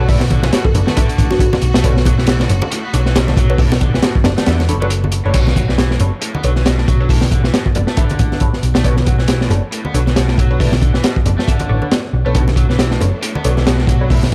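A crunchy, punchy breakbeat kit with a high-tuned snare and dark cymbals drives this funky, gritty breakbeat fragment at 137 BPM with a swung 16th feel in B minor, over a round hollow-body electric bass, an overdriven garage guitar riff with tape echo, nasal phased dub chord stabs and ringing congas in the background, while a woody kalimba melody appears briefly at 0.6 seconds, a very quiet, lush bowed string section holds Bm7 chords until 5.3 seconds before the harmony shifts to Bm9 and returns at 12.3 seconds, all set in a small, dark room.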